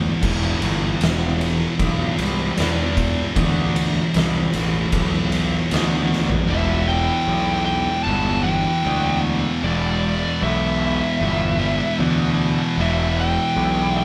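Brooding and sludgy, this stoner and doom metal excerpt moves at 76 BPM in E minor, with two thick fuzz guitars churning a low riff in the background over a growly, overdriven picked bass up front, while an oversized low-tuned acoustic kit with a fat snare and punchy kick pounds from 0.2 seconds until a drum fill at 6.1 seconds, after which a compressed fuzz lead guitar carries a high melody and a bright, double-tracked high-gain guitar joins the riff at 6.5 seconds, the band playing live together in a stone room.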